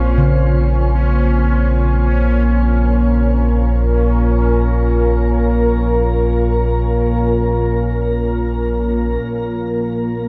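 A deep, rumbling drone of detuned, wave-folded tones anchors this ominous dark ambient fragment in free time, its slow filter sweep running to 9.2 seconds. Up front beside it, a moody pad of sawtooth unison and sub-octave sine holds sustained chords, washed in chorus and shimmer reverb, while a bubbling, resonant texture of random filter steps drifts alongside and stops at 9.2 seconds. Mellow bronze gamelan-type gongs, struck with padded beaters, sound arpeggios through tape echo in the background until 6.9 seconds, all suspended in a vast, echoing space with its highs rolled off.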